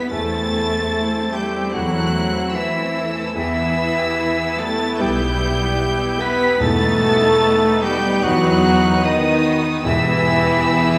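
Flowing in a rubato 4/4 at 74 BPM, this moving, bittersweet cinematic passage in E minor, cut from a longer piece, sets a distant, vibrato-rich violin section high on the melody over a lush second violin line, an airy silver flute and a soft-attack clarinet, with a felt-muted upright piano whose action noise is audible, bowed violas, a dark French horn section on sustained chords, and cello and double bass sections carrying the bass, while timpani struck with medium mallets join at 6.6 s and a wet scoring-stage reverb surrounds the whole ensemble.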